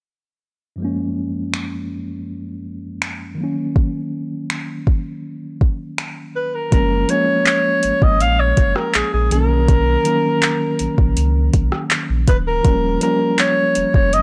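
Romantic and dreamy, this contemporary R&B excerpt moves at an unhurried, straight 4/4 pace. A mellow tine electric piano opens at 0.8 seconds, heard as if through built-in speakers, laying down lush major-seventh and minor-seventh chords. From 1.5 seconds a smooth, electronic drum kit joins up front, with finger snaps, handclaps, a soft kick, rim clicks and metallic hi-hats that sound re-recorded in a small room. At 6.7 seconds the music shifts into a second section as a round, sine-like sub bass arrives, deep and sustained with a fast attack. Just before that, a breathy alto saxophone takes the solo melody with light vibrato, punchy yet distant and roomy in a pop style. The recording has a dry, gritty hardware character set against a digital ambience.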